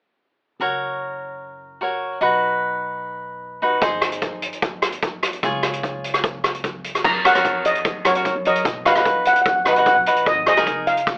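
A straight, bouncy 4/4 calypso groove with a carefree feel opens at 0.6 s with crisp, picked acoustic cavaquinho up front over a woody, thumpy pizzicato upright bass on gut strings sitting low in the mix; a street-band drum kit with a boomy kick, rim clicks, hi-hat and dark crash cymbals joins at 3.8 s; and a shimmering, metallic steel pan played with soft rubber sticks takes a mellow lead from 7.0 s, all heard through a modest small-room ambience and an AM radio sound in this excerpt cut from a longer piece.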